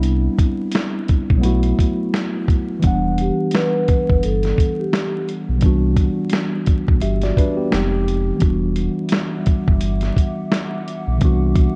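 Dark, vinyl-crackled sound with light reverb frames this reflective, hazy lo-fi hip hop passage in E minor at 86 BPM, swung on the sixteenths and tuned a touch flat. A gritty, compressed sampler-style drum kit with a thumpy kick and roomy 12-bit grit sits up front beside a deep sine sub bass with octave and a mellow tine electric piano softened by cassette tape and a low-pass filter. The harmony moves from Cmaj9 and B7sus4 in an opening break into Em9, Cmaj9#11 and a passing Fm9. A soft-mallet vibraphone with a ringing, metallic tone carries a brief melody from 3.2 s to 5.3 s, and a faint, warbling, detuned tape-like pad drifts in at 8.9 s with chorus and its own reverb.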